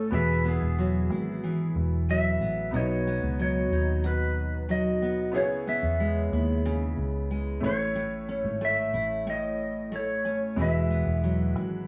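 A twangy, clean lap steel guitar carries the melody with slide and volume swells through plate reverb, over a picked dreadnought acoustic guitar with audible finger squeak, a clear, woody, slightly detuned upright piano and a dark, round, foam-muted vintage electric bass, in a carefree, easy-going pop excerpt set in a small room.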